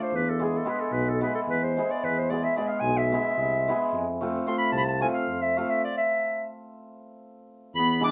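Set in a straight 7/8, this restless, bittersweet stretch of Balkan wedding-band folk is cut from a longer piece and opens with a classical-style clarinet solo up front. The clarinet is carried by a shimmering, ringing hammered dulcimer and a vintage, warm tuba with vibrato, over harmony that moves from E to F. At 5.8 seconds the band hits a stop, and at 7.8 seconds a sweet, reedy accordion with light tremolo tuning steps forward with the melody, all in a live room with moderate reverb.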